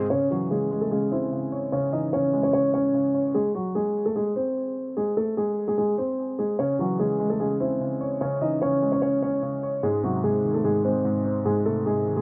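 A felt-muted upright piano carries the melody, soft and intimate and placed up front, with a low-pass filter and delay on its tone, in this brooding, hard-hitting hip hop piece at 148 BPM in a half-time 4/4 feel, cut from a longer work in C# harmonic minor. A dark, mellow baby grand piano accompanies it over the C#m and G# chords, falling silent at 3.4 seconds and returning at 6.6 seconds. A recital hall reverb gives the pair a moderate sense of space.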